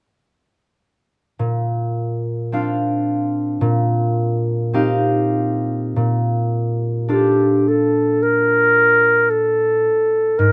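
Floating in a rubato 4/4 at around 47-56 BPM, this luminous, pastoral impressionist excerpt in Bb major opens at 1.4 seconds with a bright, ringing, fingerpicked concert harp moving through Bbadd9, Eb69/Bb and Bbmaj7 colors before a smooth-topped classical clarinet enters up front at 7.1 seconds with a short solo line, all captured by close, detailed microphones in light reverb.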